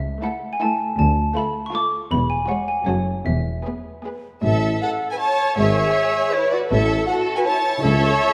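A moderate scoring-stage reverb surrounds this quirky, mischievous cinematic excerpt in A major, moving at a brisk 159 BPM in 3/4. A dry, up-front xylophone with rubber mallets carries the opening melody above bowed violins on a second melody and a counterline, lush violas, and a rich foundation of cellos and double basses. At 4.4 s the xylophone has given way, and a pure-toned concert flute takes up a second line while a mellow, roomy tuba joins the bass, with the flute and upper strings carrying the passage through to 8.3 s.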